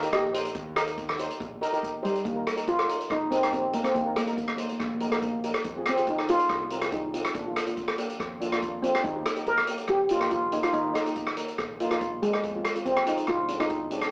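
A mellow, shimmering steel pan played with soft rubber sticks carries the up-front melody over a second, airy steel pan accompaniment in this festive, sunny calypso excerpt at 141 BPM in Eb major, backed by an overdriven fingered electric bass sitting in the background and a vintage drum kit of hi-hat, punchy kick and rim click with a rolled-off top, all heard through a rough rehearsal-room recording with a small wet room reverb, tube saturation and an AM radio tone, as the chords move from Eb through Fm and Bb.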